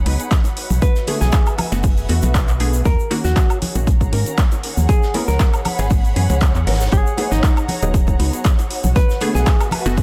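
Smooth and warm, this deep house groove in G# minor rides a swung 118 BPM pulse in 4/4, cut from a longer piece. A punchy, overdriven electronic kick sits up front beside a hollow, organ-like FM bass that is thickened with tube saturation and breathes with sidechain pumping. A layered, overdriven house kit of handclaps, hi-hat and woodblock joins from 0.1 seconds, backed by a very quiet small-room acoustic kit of hi-hat and snare, a grainy tube shaker, and bright, dry bongos and congas set in the background. Muted, detuned dub chord stabs, filtered and phased with a touch of chorus and tape echo, outline a G#m7, Bm7, D#m7 and C#m7 progression over a lush, woody bowed string section with vibrato. From 0.8 seconds a clean, dark hollow-body jazz guitar picks a melody through digital delay, and the whole mix lands dense and heavily limited.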